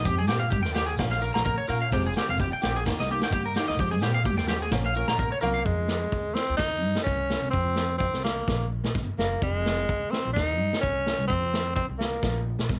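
A raspy tenor saxophone takes the solo melody up front from 5.4 seconds, its gritty tone carrying light vibrato and scooped notes over cassette tape and plate reverb, after an opening where a twangy, slightly broken-up electric guitar plays arpeggios through tape echo while a picked steel-string acoustic guitar plays quietly behind it until 5.6 seconds. This danceable highlife guitar band excerpt in F minor moves at 128 BPM with a swung sixteenth feel, driven by a woody, growly pizzicato upright bass and an up-front vintage drum kit with a punchy kick and medium-tuned snare. Very quiet high-tuned congas, a grainy shekere and ringing agogo bells sit in the background of the first half of this warm home cassette recording in a small booth.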